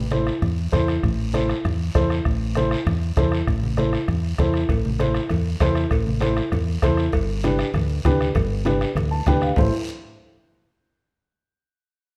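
A driving, straight cumbia groove in 4/4 rides on a close, dry bombo with a soft beater, thin-skinned congas set back in the mix and a raspy guiro, while ringing cowbell and timbales join at 4.7 seconds. Up front, a round, punchy fingered electric bass and a woody, boxy upright piano, intimate with audible action noise and long sustain, carry a passionate vamp on A minor that moves to G near the end. The piano adds a brief fill at 9.0 seconds, all within a dark production and a moderate large-studio reverb in this fragment from a longer piece.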